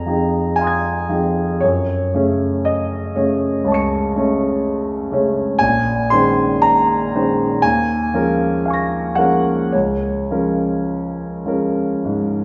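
Luminous and dreamy, this 12.4-second fragment of impressionist classical solo piano drifts in a rubato 4/4 at 51-63 BPM, tuned to A4 = 436 Hz, with a clear, up-front concert grand spanning Bb1 to Db7. Its deep bass and open, long-sustaining tone are bathed in the wet 1.5-second reverb of a recital hall or church, with the top end cut away above 7.8 kHz, as the harmony glides from Fm7 through Gbm6, Bbm11 and Eb9sus4 to settle on Db6 at 9.7 seconds.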